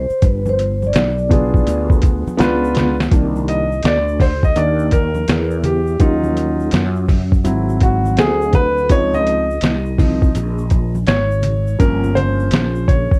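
A swung, laid-back hip hop groove in 4/4 sets a mellow, nocturnal jazz-hop mood, with a thumpy, muffled sampler-style drum kit up front carrying overdriven, 12-bit grit and a fat snare, while a growly fretless electric bass with ensemble chorus sustains beneath and an egg shaker and congas ring softly in the background. A vibraphone played with soft mallets opens with a short, band-limited melody shimmering with slow motor vibrato, the dark concert grand piano slips in at 1.3 seconds, and a drum fill leads into the piano's intimate solo from 3.1 seconds, its action noise and deep bass audible over lush extended chords. The whole fragment, cut from a longer piece, sits in light reverb with a cassette-tape patina.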